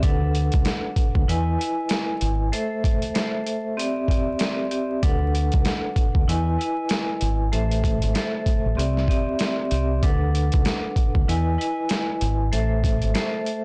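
A vibraphone, a deep fingered electric bass and a sampler-style drum kit open this soulful, nostalgic boom-bap hip-hop cut together, riding a 96 BPM groove in 4/4 with a lazy 16th-note swing. The vibraphone, struck with medium hard mallets, carries the accompaniment with a metallic, ringing tone and a fast motor vibrato, its sound filtered and bathed in plate reverb. Beneath it the bass sits up front, dark, round and punchy, thickened by transformer saturation, and drops out at 13.1 seconds, just before the end. The trip hop drums are compressed, pitched down and muffled, with a thumpy kick, a medium-tuned snare and hi-hat carrying a tape-warm, small-room character, and a break arrives at 2.5 seconds. The harmony cycles through D6, Emaj7, Am and Cadd9, while the whole mix sounds blown-out and overdriven, dusted with vinyl crackle, lightly reverberant and dulled in the top end.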